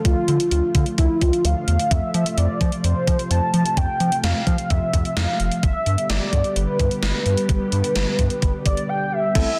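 A velvety, detuned synth lead carries the melody up front, with chorus, vibrato and digital delay, over a gated 80s digital drum machine whose thumpy kick and gated reverb snare punch through in this driving, cool synth-pop excerpt at 129 BPM. A round, deep analog bass and a mellow, vintage string machine of cellos holding sustained chords with ensemble chorus fill out the harmony as it moves from Dm to F and then G. At 9.4 seconds a clean tine electric piano and a shimmering hammered dulcimer in the background slip in briefly, all set in a moderate digital room and a dense, heavily limited master.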